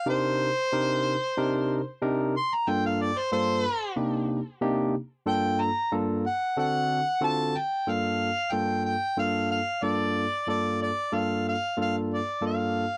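A straight 4/4 pulse carries this mournful, soulful blues fragment, cut from a longer piece. A mellow, jazz-style harmonica sits up front with light vibrato and scooped notes, and its overdriven tone has a distant, roomy quality. It takes a solo from the opening through 7.5 seconds over a minor-key progression that moves between Cm7 and Gm7 and leans on a tense D7#9 before settling back on Gm7. Beneath it, a bright, barky tine electric piano, lightly overdriven through a combo amp, supplies the accompaniment in its lower and middle register. The second section begins at 7.5 seconds. The recording as a whole is dry and close, with the intimate feel of a 1970s studio.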